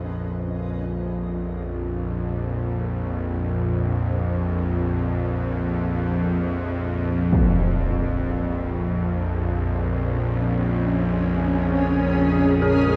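A tense, string-like bowed drone sits up front for the whole 13 seconds, its bright sawtooth tone carrying vibrato and a noisy edge low in the register, while a cloudy, detuned granular pad breathes in only at the very start and returns from 10.8 seconds. This desolate, unsettling dark ambient fragment drifts in free time over a Bbm7 harmony, interrupted at 7.3 seconds by a huge, bright impact dulled through a low-pass filter. In the final moments an eerie, inharmonic FM bell arpeggio appears in the background with chorus and phaser, all within a dreamy mix soaked in plate reverb.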